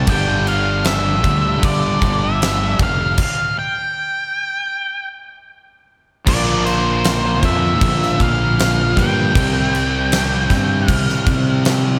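A straight 4/4 pulse drives this angsty, cathartic quiet-loud alternative rock fragment, with a huge arena drum kit up front delivering a fat snare, punchy kick and crash cymbal in a big room, and the band breaking into a stop from 3.2 to 6.3 seconds. A dark, octave-fuzz lead guitar with slapback echo carries the melody over a growly, overdriven fuzz bass played with the fingers, while a warm, sludgy guitar and a lo-fi raw garage guitar, both overdriven with slapback echo, pick out riffs in the background beside a very quiet, double-tracked distorted electric guitar. Light reverb and studio ambience frame the dense, heavy sound.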